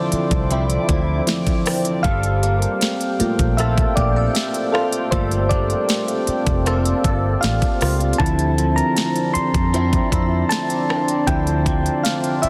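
Moody and sensual, this contemporary R&B excerpt is led by soft, round electric-piano-like synth keys with chorus, sitting up front over a deep, detuned ambient pad and clean, twangy arpeggios from a direct-recorded electric guitar with tape echo. A foam-muted vintage fingered bass gives round, punchy low end, while a trap kit adds a knocking kick, sharp snare and crisp hats with overdrive, inside a lightly reverberant room and a dense, heavily limited master. A barely audible downlifter opens the clip, and a pure, warbling FM bell glimmers in the background until 5.9 seconds as the chords move from Dm9 to Gm9 and back.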